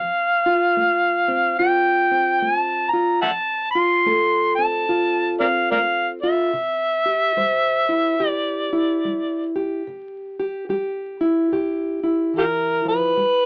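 A swung 4/4 groove at 72 BPM carries this gritty, soulful acoustic country blues excerpt in C major, where an amplified, overdriven harmonica plays a jazz-style solo up front with vibrato, tongue slaps and scooped notes over a dark, full-bodied fingerpicked dreadnought steel-string guitar, plugged in and also up front, as the harmony moves from F to C at 6.5 seconds inside a wet booth ambience tinged with vinyl crackle and an AM radio tone.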